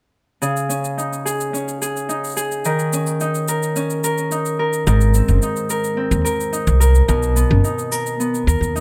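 Over a straight 4/4 pulse, this delicate, autumnal folktronica piece places a ringing, fingerpicked Celtic harp up front, its arpeggios softened by a low-pass filter and delay, beside an overdriven electronic cabasa, while a woody, thumpy pizzicato upright bass with a dark, tube-saturated tone enters at 4.9 seconds as the chords move from C#sus2 through D#5 and G#add9 to Bmaj7 within a light reverb.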